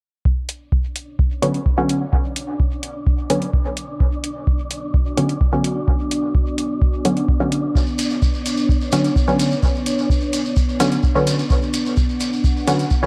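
This deep, meditative dub techno excerpt opens on a dry, tape-warm kick sitting up front, soon joined by metallic analog hi-hats and a muted sawtooth chord stab whose filter sweeps across the passage, colored by chorus, phaser and dub echo. A breathy, wind-like noise texture and a dark, detuned pad with slow attack and sub octave fill in behind, both breathing with sidechain pumping, while the harmony rests on a B minor add nine chord. At 7.8 seconds a grainy, distant shekere enters, trailed by dub echo in an echo-heavy mix with light reverb.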